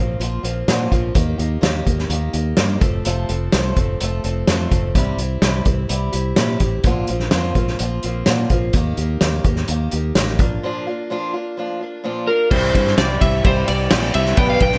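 A boxy, ladder-braced acoustic guitar and round, up-front fingered bass open this hopeful, open-road folk and heartland rock excerpt at 127 BPM in C mixolydian, joined at 0.2 seconds by a punchy vintage kit with a fat snare and dark cymbals in a pumping small room, before a break at 10.6 seconds, during which a slightly broken-up slide guitar melody played with fingerpicks enters at 12.3 seconds, while a very quiet brilliant grand piano and a smooth tonewheel organ with slow rotary and key click enter at 12.5 seconds under light reverb.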